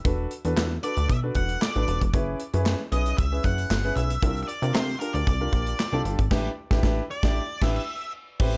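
A plucky analog bass sits up front in this short early-eighties boogie funk excerpt, its punchy, fast-attack filter pluck blending sawtooth, pulse and sine tones that decay. A polished modern studio drum kit with a punchy kick, a medium-tuned snare, hi-hat, handclaps and a crash cymbal drives a straight 4/4 groove at 115 BPM, its airy gated reverb adding sheen. A warm grand piano plays accompaniment in the middle register beneath an electric octave-fuzz lead guitar, which enters at 0.8 seconds with a picked, distorted melody trailed by tape echo. The harmony moves through suspended ninth chords, E9sus4, F#9sus4, C9sus4 and A9sus4, in a tuning of A4 = 441 Hz, and the whole band hits an accent from 6.3 seconds. The small-room sound and slick playing give the clip a late-night mood.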